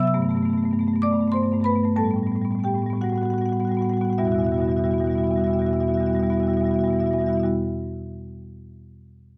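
Contemporary classical music for solo marimba, this short excerpt from a longer piece is reflective and hypnotic, moving in a rubato 6/8 in E minor with a pulse that drifts between 48 and 71 BPM in dotted quarters. The marimba, played with medium hard mallets, spans from E2 up to E6, and its rosewood bars give a woody, mid-forward tone that sits up front. The opening passage slows down over its first 4.2 seconds, with harmony passing from Gadd9 to Asus2 at 2.0 seconds. A new section begins at 4.2 seconds on an Emadd9 chord, and the marimba stops sounding at 7.5 seconds. Close, detailed microphones capture the instrument, while a moderate recital hall reverb with a 1.7 second decay lets each note bloom into the space.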